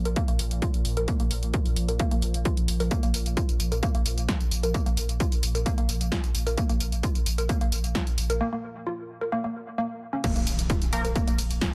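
Driving peak-time techno at 131 BPM in a straight 4/4, dark and hypnotic, this excerpt of a longer piece sits on a Bb5 chord and is tuned to A4 = 436 Hz. An overdriven, heavy electronic kick drum leads up front alongside a punchy analog drum machine with a dry snare, hi-hat, ride, crash and tambourine, all overdriven too. Underneath, a thick, saturated sub bass holds Bb1 through a low-pass filter with sidechain pumping, while a deep, moody ambient pad of detuned unison sawtooth drones in the background between Bb2 and F3, soaked in chorus and its own reverb. The main riff is a woody, wave-folded pluck with a short decay, ranging from Bb3 to Bb4, coloured by tube saturation, lush chorus and dub echo. After a break from 8.4 seconds, the drop arrives at 10.2 seconds with a background impact, and a brief, edgy sync-sweep polysynth stab with a nasal sweep flashes between F3 and Bb4 at 10.9 seconds. 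The mix is dry, with little reverb.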